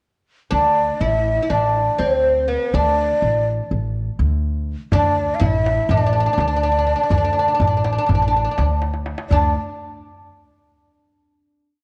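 Longing and soulful, this short Turkish makam ensemble piece in 9/8 at 246 BPM (eighths) in D makam huseyni opens at 0.5 seconds with a bright, woody fretless oud playing a modal melody with ornaments up front, a breathy, hollow ney doubling the same line with its own ornaments and vibrato, and a thumpy gut-string upright bass on simple root and fifth, while a crisp, deep metal-shell darbuka joins in the background at 4.9 seconds with a low and high stroke pattern and a drum fill before the final note rings from 9.3 seconds, all set in moderate stage reverb and worn, warbling cassette tape with pitch drift.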